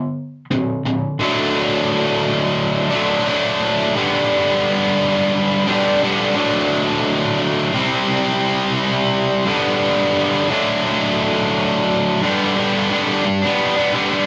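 A rough rehearsal-room recording with a wet studio reverb gives this rock fragment, cut from a longer piece, a raw and roomy character. A single sludgy, distorted electric guitar carries the whole passage, sitting up front in the mix with a bright, overdriven edge. The picked part is double-tracked, which thickens its gritty tone as it moves through a straight 4/4 feel. It opens on a D5 chord before settling into a swaggering, driving progression around D, G and C from 1.2 seconds. A final turn to G at 12.2 seconds closes the fragment at 14.3 seconds.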